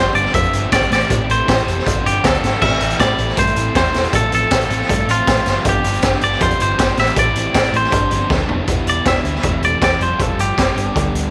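Restless and bittersweet, this indie rock excerpt moves in a straight 4/4 over a chord cycle that keeps returning between G7sus4 and Am7. A twangy, compressed electric guitar carries the melody with a slapback echo, set against a crunchy, double-tracked overdriven guitar riff and a round, punchy picked bass. A raw garage drum kit sits up front, with a boomy kick, a high-tuned snare, gritty saturation and a rolled-off top, while a very quiet, detuned sawtooth pad with chorus holds soft sustained chords underneath. A drum fill at 8.3 seconds leads into a new section at 8.7 seconds, where a clean electric guitar solo enters as the harmony shifts through Em7 and Fsus2 to land on G. Light reverb colours the whole mix.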